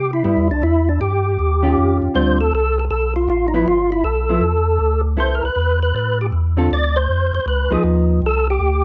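A fat, lightly overdriven tonewheel organ carries the melody with third-harmonic percussion, key click, chorus vibrato and a slow rotary speaker, while a second, piping tonewheel organ lays down a scooped, clean bass line through the same slow rotary and vibrato. This is a greasy, soulful soul jazz organ trio cut from a longer piece, swinging in 4/4 at 158 BPM in C major. A dark, picked hollow-body electric guitar comps up front from 0.2 to 8.2 seconds through changes such as Cmaj7, Eb9, G13 and Db9, all set in a small, moderately reverberant room.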